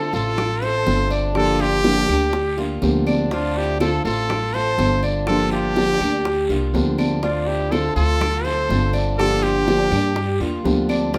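A moderate studio reverb surrounds this danceable, nostalgic slice of Cuban son and guajira at 123 BPM in 4/4, moving between Dm7 and Gm7. Up front, a bright trumpet carries the melody with light vibrato and scooped notes over a woody pizzicato upright bass. A dark, fingerpicked nylon-string guitar with finger squeak and a metallic, double-strung Cuban tres picking arpeggios fill the middle, and a lush, very quiet violin section plays a distant bowed second line with portamento. Ringing, high-tuned congas and a raspy guiro sit in the background, with very quiet round, low-tuned bongos and saturated claves that enter at 0.4 s.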